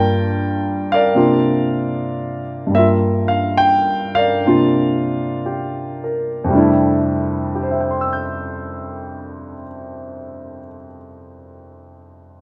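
Sophisticated and relaxed, this brief solo jazz excerpt in F major features a grand piano, warm and natural and placed up front, playing rubato with a swung feel between 56 and 82 BPM, slowing through its opening 6.5 seconds over alternating Gm7 and C9sus4 chords before settling onto Fmaj13, all within a large studio's moderate reverb.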